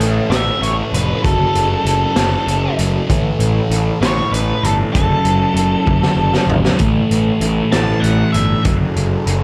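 Hypnotic and trippy, this psychedelic rock excerpt in 6/8 pairs a thick, double-tracked fuzz guitar riff with phaser and a round, overdriven picked bass, both up front, over a gritty, punchy garage drum kit that plays a fill at 5.9 seconds, while a very quiet, reedy combo organ holds sustained chords with heavy vibrato and a dark octave-fuzz lead guitar carries the melody with slapback echo from 0.3 to 8.6 seconds, all circling between A and F#m in a small room.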